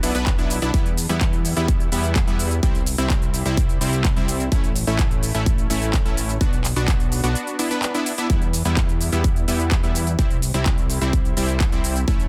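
A detuned, filter-swept sawtooth supersaw stab riff with sidechain pumping and tape echo opens this euphoric, powerful festival progressive house excerpt, joined from the start by a fat, wave-folded analog bass that pumps too and a big-room dance drum kit of handclaps, crisp hi-hat and shaker, before a punchy, up-front electronic kick lands at 0.3 seconds, the whole dry mix pressed into a dense, heavily limited master as the chords move through Bm, Em, C and A.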